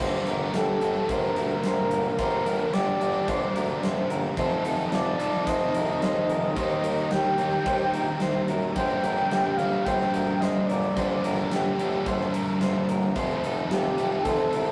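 A rough rehearsal-room recording with warm saturation and a wet studio reverb frames this brooding, melancholic rock cut, blending shoegaze and dream pop at 109 BPM in G minor, moving through Gm, F7 and Eb. Two picked, overdriven electric guitars drive riffs, one biting and one sitting up front, while a dark, slightly broken-up guitar through a small old amp plays lo-fi arpeggios in the background, a clear vintage tuba holds the bass, and a huge arena drum kit with a punchy kick and pumping hall sound keeps a straight 4/4. From 0.6 seconds a reedy, woody FM lead with a soft attack, a noise layer and chorus carries the sustained melody over the top.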